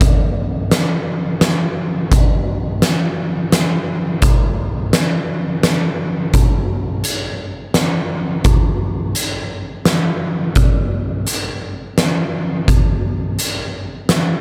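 A big, pumping room sound with light reverb surrounds this short rock excerpt in 3/4, cut from a longer piece and carrying a soaring, hopeful mood. An oversized, low-tuned acoustic drum kit plays alone from start to finish, up front and gritty with saturation, pairing a fat snare and boomy kick with hi-hat. The pattern shifts into a new section at 6.3 seconds and runs to 14.3 seconds.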